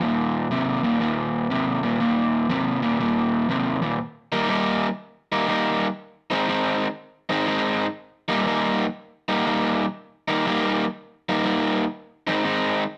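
A swung 4/4 pulse at 121 BPM, with a lilting 66% swing on the eighth notes, carries this laid-back, soulful blues in Eb major. A single overdriven semi-hollow electric guitar takes the solo role from 0.0 to 12.8 seconds, picked and placed up front, ranging from Eb2 up to Eb4. Its hollow-body tone is warm and overdriven, set in light reverb. The opening bars rest on an Eb5 power chord before the harmony moves at 4.0 seconds into a passage that alternates between Eb and Ab. The clip is cut from a longer piece, so it captures just a brief stretch of this relaxed blues groove.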